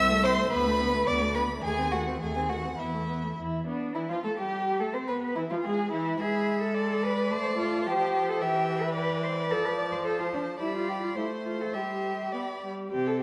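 A quick classical-period movement for string quartet, this lively, cheerful passage moves at 107 BPM in 2/4 with a flexible, rubato feel, opening in A minor before brightening to C major at 8.4 seconds. The first violin carries the melody high above the group with a rich, smooth vibrato tone, sounding somewhat distant. The second violin shapes an expressive second line close to the listener, its soft attacks and portamento slides giving it a tender quality. Beneath them, the viola supplies even, vibrato-laden accompaniment, while the cello anchors the bass with expressive portamento and a broad range. The whole quartet sits in a wet concert hall reverb with a long, lingering tail, tuned slightly low, and the recording is cut from a longer piece.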